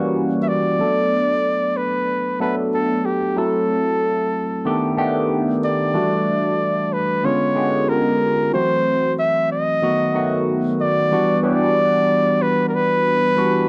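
R&B fragment at 93 BPM in E minor with a sultry, late-night swing on the sixteenths, where a warm, punchy flugelhorn leads the melody up front with light vibrato and scooped, pop-style notes over a barky tine electric piano, lightly overdriven through a combo amp and colored by phaser, as jazzy altered chords settle onto an Em9 at 11.1 seconds, all set in a moderate small-room reverb.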